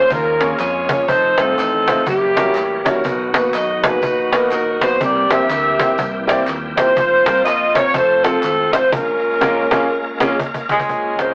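A rough rehearsal-room sound with saturated, AM-radio coloring and moderate reverb frames this solemn, soulful gospel piece, cut from a longer work. Its swung groove moves with a dark, vintage saxophone section carrying the melody up front over a clear, woody upright piano, an overdriven tonewheel organ shouting gritty chords in the background through a slow rotary speaker and chorus vibrato, a round, punchy fingered electric bass, and a snappy, close cajon. Tambourine, egg shaker and group handclaps drop out at 8.8 s, the cajon fills alongside a band accent from 8.9 s, and a breathy, whispered tenor saxophone slips in at 10.7 s.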